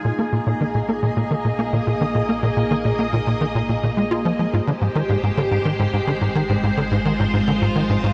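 Bathed in a huge, moderate ambient reverb, this cosmic, hypnotic excerpt of sequencer-driven space music at 107 BPM sets a tight, punchy, nasal sequencer bass riff with filter-plucked sawtooth and square tones, tape echo and ensemble chorus up front, beside lush, vintage string machine chords passing from Bb7sus4 to Abmaj7 at 4.5 s through phaser and ensemble chorus, while a detuned, pulse-width-modulated analog drone with tube saturation fades in from the background across the whole 8.1 seconds.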